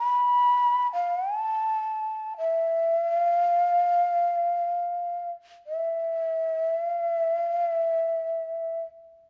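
A breathy, hollow bamboo shakuhachi plays alone and up front from the start until 8.8 seconds, holding straight tones with soft attacks between E5 and B5 in a meditative, austere piece of traditional Japanese chamber music. The line moves in free time, tuned to A4 = 439 Hz, and slows from 6.2 seconds to the close of this short fragment from a longer work. Light reverb surrounds it, and the worn cassette-tape sound adds a warbly pitch drift.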